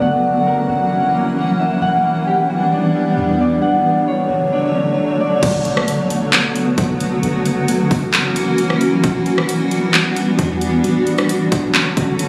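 Recorded on a phone in the room and bathed in lush hall reverb with a faint mains hum, this spacious, ethereal slice of atmospheric cloud-rap moves at 133 BPM in a half-time 4/4 feel in B minor, cycling through F#7, Em9, Dmaj7 and Bm7. A bright, blurred granular pad with a slow attack sits up front, pumping against the sidechain, while a thumb-plucked Celtic harp rings out delayed arpeggios and a deep, boomy sine 808 bass decays quietly in the background. At 5.4 seconds an overdriven trap kit with a hard-clipped kick, bright hats, handclaps, rim clicks and a crash arrives beside a barely audible electronic impact, and the harp drops out at 7.6 seconds.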